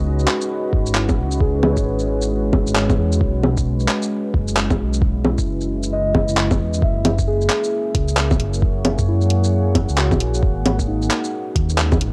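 A hazy, cassette-soaked sound with light digital ambience opens this melancholic, rainy fragment of future garage, cut from a longer piece and moving at 133 BPM in 4/4 with a 62% swing on the sixteenths. Muted, felt-like synth keys sit soft and intimate in the accompaniment, their warbling vintage tone colored by chorus, analog delay and tape, while a deep, moody ambient pad holds mellow sustained chords alongside them with a slow attack, long release and its own reverb. Both of these parts, along with a dark, detuned saw bass that rumbles and beats low in the register, breathe with sidechain pumping. An overdriven, up-front garage kit of bongos, handclaps, hi-hat and shaker enters at 0.2 seconds, joined at 0.7 seconds by a muffled, pitched-down electronic kick with a thumpy, tape-warm weight. The harmony drifts from G#m7 to Bsus4 and F#7 before settling back on G#m7 near 10.4 seconds.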